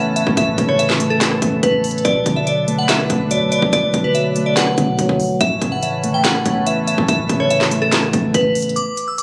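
A glassy, crystalline FM synth bell carries the melody up front, its bright, fast-decaying notes shimmering with chorus over a menacing, eerie trap beat in a half-time feel. Beneath it, a mellow tine electric piano plays close, direct accompaniment through the Aadd9 and Bm7 changes, while a distant, airy flute ensemble holds straight-toned, expressive chords far back in the mix. A clean, sine-like 808-style bass adds a deep, boomy undertow, very quiet and dark. The electronic trap kit enters at 0.2 seconds, up front with a hard-clipped kick, sharp snare, crisp hats, handclaps and rim clicks carrying a warm, tape-like tone. After 8.8 seconds, the kit and bell ring on briefly in a short break before this section cut from a longer piece ends at 9.2 seconds, all heard through a phone recording in the room with club reverb and compression.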